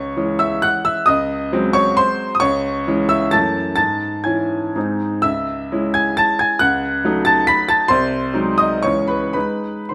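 Dotted rhythms drive this romantic classical dance in 3/4, its rubato pulse drifting between 104 and 150 BPM and giving the music a wistful, capricious air. A solo grand piano plays throughout the 9.9 seconds, reaching from B#1 in the bass up to B6, in C# minor. The harmony moves from C#m through G#7 over a C# bass, F#m7 and a half-diminished D# chord before settling back on C#m and closing on a bare G#5. The piano tone is clear and intimate, with audible action noise adding a natural, up-front presence. Close, detailed microphones capture the instrument within a moderate recital hall reverb, and the passage is cut from a longer piece.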